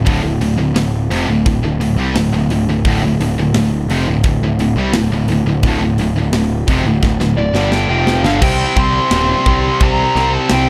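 Heavy metal at 86 BPM in D minor, this short excerpt cut from a longer piece feels aggressive and relentless, with a dark production and light reverb. Two bright, distorted guitars, one heavy and high-gain and the other tight, play the riff together from the start, while a growly, fuzz-soaked electric bass sits up front beneath them. A tight acoustic metal kit with a medium-tuned snare, tight kick, hi-hat and crash cymbals enters at 0.1 seconds, and its sound is big-roomed and polished. A drum fill runs from 7.0 to 8.4 seconds, and a dark, high-gain lead guitar melody enters at 7.4 seconds in the upper register. At 8.4 seconds the harmony moves from D minor to a C power chord as a new section begins and carries through to the end.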